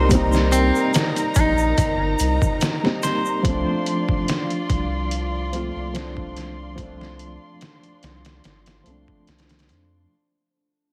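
Trip hop at 72 BPM with a dark, hypnotic mood and a light swing, built on pitched-down, muffled sampler-style drums with a thumpy kick and overdriven grit up front, a round, deep analog bass with tube saturation, a soft, thick-felt upright piano shimmering with harmonic tremolo and tape echo, and veiled con sordino violins holding sustained chords, while a bright, twangy clean electric guitar plays echoing arpeggios and a faint tube shaker sits in the background until both stop at 3.4 s, as the harmony moves from Cm7 to Dm7/C beneath vinyl crackle and a heavily compressed radio sound that fades out across this excerpt from a longer piece.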